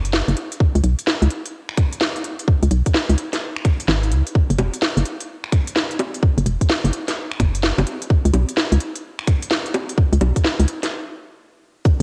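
A swung 16th-note two-step shuffle in 4/4 drives this soulful, moody UK garage fragment, where a hollow, dark, organ-like FM bass with tube saturation and sidechain pumping sits up front beside a tape-warm garage kit of cracking snare, crisp hats, bongos, cabasa and finger snaps, joined at 0.6 seconds by a tight electronic kick, all caught dry on a home cassette recording before a stop at 10.9 seconds.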